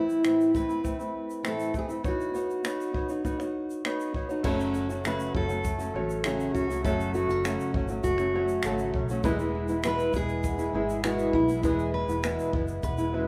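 An old ladder-braced acoustic guitar sits up front with a woody, boxy tone and old strings, fingerpicking the accompaniment across this heartfelt, carefree acoustic pop excerpt at 100 BPM in a straight 4/4, tuned to A4 = 435 Hz. Beside it, a full-bodied dreadnought steel-string guitar, also fingerpicked, carries the melody, while a compact cocktail drum kit enters at 0.1 s with finger snaps, shaker, a punchy kick and dark, dry cymbals. At 4.4 s the harmony moves from Am and Badd9 to F#m, and three more parts join: a round, foam-muted vintage electric bass, a worn concert grand piano with deep bass and short sustain, and a fingerpicked flamenco guitar playing arpeggios. The piano and flamenco guitar sit in the background, and the passage settles on E at 9.2 s. A moderate recital hall reverb gives the whole a church or concert-hall space.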